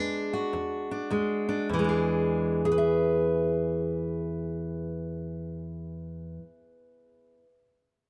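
A fingerpicked steel-string acoustic guitar opens on an E7 chord, easing its pace over the first 1.7 seconds before settling into a rollicking, swaggering blues. It is the only part throughout this short piece cut from a longer performance, running to 7.5 seconds and ranging from low E2 to high E5. The guitar has an auditorium body and warm tone, and it sits up front in the mix. A swung four-beat groove gives the playing its loose, strutting lilt as the music moves into a new section at 1.7 seconds. A moderate small-room reverb and a live, in-the-room recording give the sound an intimate, natural presence.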